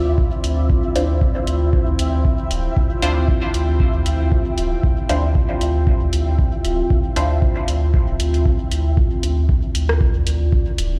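Heard through a big sound system in a bare room with a large studio reverb, this hypnotic, nocturnal dub techno fragment moves at 116 BPM in D minor, resting on a single Dm9 chord with a lightly swung feel. A dark, chorused ambient pad and a clean, smooth sine sub bass sit under the pumping sidechain from 0.0 s, while a grainy, flickering texture hovers in the background until 9.0 s. An overdriven analog kick drives up front, joined by a layered deep house kit of hi-hat and rim click with dub echo, as a muted, detuned chord stab with phaser and echo enters at 1.0 s and takes a filter sweep near the close.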